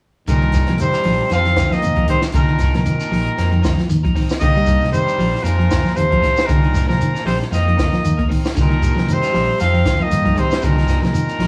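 Swung sixteenths at 116 BPM in 4/4 drive this intense afrobeat excerpt in C minor, where a dry cocktail kit with a high-tuned snare and punchy kick, a grainy background shekere and a dark, round fingered bass sit beneath twangy clean guitar arpeggios and warm, slightly broken-up guitar stabs, while an up-front trumpet with vintage vibrato carries the melody over a bright trombone and a raspy, gritty baritone saxophone, all over a vamp alternating Cm9 and F7sus4 in a small stone room.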